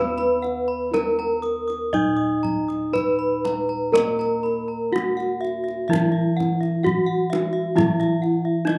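This Javanese gamelan excerpt in Eb pelog, taken from a longer piece, moves at a stately 60-67 BPM in a straight 4/4, its tuning set slightly below standard at A4 = 438 Hz. The melody rings out on a bronze metallophone struck with a horn mallet, placed up front, with paired tuning that gives a shimmering beat and a boxy, close character touched by slapback echo. Beneath it, a second metallophone, played with a wooden mallet, carries the accompaniment in a lower, warm register. Above both, a third metallophone spins bright arpeggios an octave higher, also carrying slapback echo. Bossed gongs played with padded beaters supply a round, mellow, airy bass that beats softly under the ensemble. The kendang enters at 0.2 s with tight, hard-handed strokes that sound distant, as if heard across a large room, while the rest of the outdoor recording stays dry and close.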